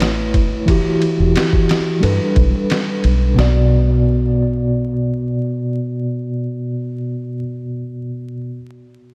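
A dark, smoky trip hop fragment cut from a longer piece, moving at an unhurried, straight pace in 4/4. A mellow tine electric piano sits up front carrying the accompaniment, its clean tone shimmering with tremolo and tape echo as it moves through add9 chords before settling on B minor at 3.4 seconds. Beneath it, a deep dub fingered electric bass gives round, punchy, foam-muted notes with a filter sweep over its opening phrase, dropping out at 5.4 seconds. A gritty, pitched-down sampler-style drum kit with a thumpy kick, medium-tuned snare and ride cymbal plays only briefly, its compressed, tape-warm hits framed in small room ambience. The whole mix is dreamy and soaked in plate reverb, with vinyl crackle drifting under the keys as the piano rings on alone to the end.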